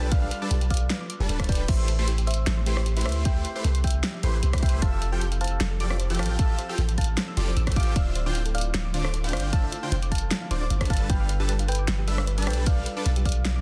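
A dense, heavily limited modern master sits in digital ambience, framing this excerpt of dreamy, emotional future bass. Up front, a deep, boomy 808-style bass with a fast attack and mellow decay anchors the half-time feel, joined by a punchy electronic kick and a pop drum kit whose fat snare, rim click, hi-hat and crash cymbal were re-recorded in a small room. A huge, lush supersaw riff of bright, detuned sawtooth chords pumps with sidechain compression, carrying a G7, Am7, Fmaj7, Dm7 progression that returns to G7 near 10.9 seconds. On top, a round, tine-like thumb-piano-style pluck with FM tone, chorus and delay sings the melody, while a gentler twin pluck with a short decay spins arpeggios farther back. In the background, a soft, sine-based lead traces high arpeggios and a breathy, slightly nasal pad with a slow attack and long release holds sustained chords, both shimmering with chorus and breathing with the sidechain pumping under a light 16th-note swing.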